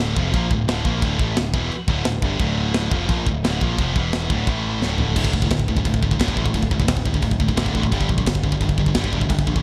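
Relentless and aggressive, this short cut of heavy metal layers a bright, up-front high-gain guitar riff with a sludgy overdriven guitar tucked in the background, with a growling, punchy picked bass and a tight, gritty drum kit with china and crash cymbals and gated reverb that enters at 0.2 seconds, all within a small room and a bright 1980s-style digital sheen, before a drum fill at 4.8 seconds launches the second section, which moves to a G minor chord at 7.9 seconds.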